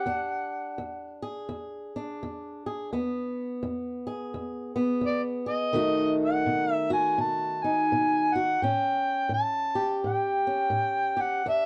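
A dark production with light reverb gives this short excerpt from a longer acoustic country blues piece a soulful, gritty feel. It moves at 84 BPM in 4/4 with a swung eighth-note lilt. A mellow, vintage-toned harmonica carries the melody up front, played in a jazz style with light vibrato and scooped notes. Beneath it, a fingerpicked acoustic guitar with a boxy body supplies swing-style accompaniment, also placed up front. The harmony moves from E7 to B7 at 5.8 seconds and then to A7 at 8.6 seconds, with both parts playing through to the cut at 11.7 seconds.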